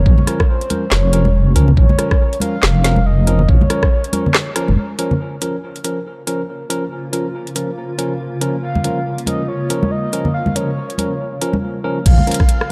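A deep, soft wobble bass sits up front in this heavy, meditative slice of deep dubstep, its detuned, compressed tone thickened by chorus as it carries the low end through the opening stretch before dropping out at 4.8 seconds. A knocking electronic kick drum shares that front position, while a garage drum kit with a woody snare, metallic hats, handclaps, rim clicks and crash cymbal runs the length of the recording in a swung, half-time feel. Bright, close congas with hard hands add acoustic percussion, and a barky tine electric piano, clean through a combo amp, supplies stabs treated with dub echo. A breathy, flute-like synth lead with vibrato and analog chorus floats its melody over the opening and returns at 8.6 seconds, its dub echo trailing behind it. From 6.6 seconds a granular cloud pad adds blurred, evolving sustained chords with a slow attack, and the whole production stays dark under a light reverb.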